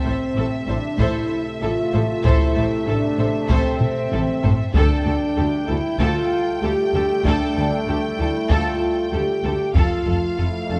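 Relentless and dark, this short cut from a longer epic orchestral film score moves at 96 BPM in a straight 4/4, built over a chord motion from A minor to D suspended fourth and then F. Up front, a mellow French horn section holds sustained chords, joined by a bright trombone section with light vibrato, while a distant violin section carries the melody with a clear, intense, vibrato-rich tone. In the background, a second violin section traces a smooth, even line, bright violas supply focused accompaniment, and rich cellos and double basses anchor the bass, the basses entering at 0.1 seconds. A taiko ensemble struck with heavy sticks drives the music from 1.0 seconds to 10.3 seconds, with a drum fill from 3.8 seconds to 4.7 seconds. The whole sits in a moderate scoring-stage reverb with a dark, warm production.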